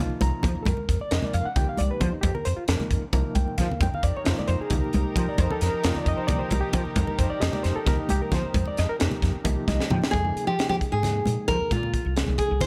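Driving 7/8 at 266 BPM in eighths, this slick, intense electric jazz fusion passage in F minor, cut from a longer piece, pairs a gritty, overdriven reed electric piano with fast tremolo and a round, woody fretless bass with ensemble chorus, while bright background congas join a crisp, up-front drum kit with a high-tuned snare and tight kick, the piano and drums trading fills, dark, nasal bowed chamber strings sustain chords from 3.8 to 10.1 seconds, and a fingerpicked classical nylon-string guitar then carries the melody over Fm7.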